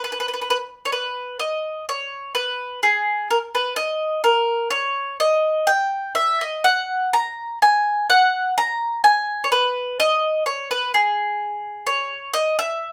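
Wistful and romantic, this short fragment of Italian folk music moves in a three-beat lilt with a light swing. A solo acoustic mandolin carries it from the first moment to 12.9 seconds, its picked double strings sounding woody and sitting up front. A moderate studio reverb surrounds it with the feel of a live room.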